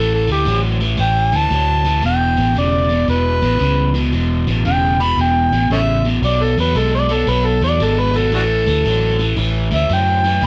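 A gritty, amplified harmonica solos from the start with light vibrato, tongue slaps, scooped notes and a jazz-style touch bathed in plate reverb, over a crunchy, bright picked guitar riff and a dark, round, punchy foam-muted fingered bass in this laid-back, swaggering electric blues shuffle, a swung fragment with light room reverb cut from a longer piece.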